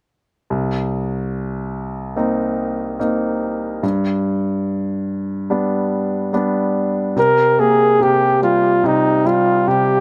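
A clear concert grand piano opens this melancholic, heartbroken pop excerpt at 0.5 s, its intimate, up-front sound carrying deep bass, long sustain and audible action noise as it accompanies over Cm7 and G chords in a slow, straight four. At 7.2 s a mellow flugelhorn takes the melody over a C5 chord, a jazz-style solo placed up front with light vibrato, a soft attack and tape echo. The room adds a light reverb.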